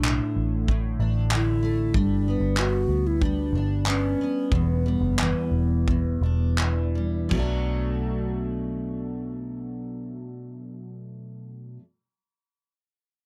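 This dry, close recording has a 1970s studio character, with little room sound around the players. The excerpt is acoustic pop in B minor and 4/4, wistful and reflective. It moves at a straight 81-95 BPM and slows down between 1.9 and 7.3 seconds. A bright bass ocarina carries the melody with an airy, clay tone, vibrato and a chiffy, crisp attack, trailed by tape echo, and it falls silent at 6.6 seconds. Underneath, a double-tracked, full-bodied jumbo steel-string acoustic guitar is picked through chords moving from D5/A to G and Em7, landing on Bm7 as the second section begins at 7.3 seconds. A vintage foam-muted electric bass adds a round, dark, amped low end. A natural country drum kit sits up front in a small room with a punchy kick, dark crash cymbal and handclaps until 7.5 seconds, leaving guitar and bass to close the passage.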